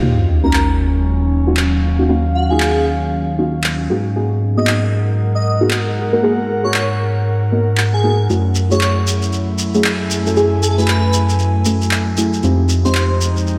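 A swung 4/4 deep house groove carries this moody, smooth clip, with overdriven electronic handclaps and a sub drop at the top. A gliding, portamento synth bass sits up front beneath dark, wave-folded chord stabs dressed in chorus, phaser and delay, while a breathy, slow-attack pad and a bright, detuned lead with vibrato and analog delay float over minor ninth chords. A grainy acoustic shekere joins at 8.3 seconds, and the whole mix is soaked in a dreamy plate reverb.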